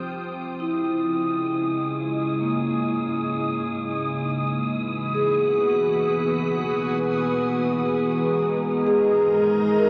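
Peaceful and serene, this slow 65 BPM ambient fragment, cut from a longer piece, fades in a bright, detuned organ-like pad holding sustained chords from Fsus2 through Dbmadd9, E and Abadd9, a metallic, ringing vibraphone playing delayed arpeggios and an airy, breathy wind-like noise texture, with a resonant overtone-sweeping drone on Ab3 entering in the background at 8.4 seconds, all bathed in a huge reverb and a worn, warbling cassette-tape pitch drift.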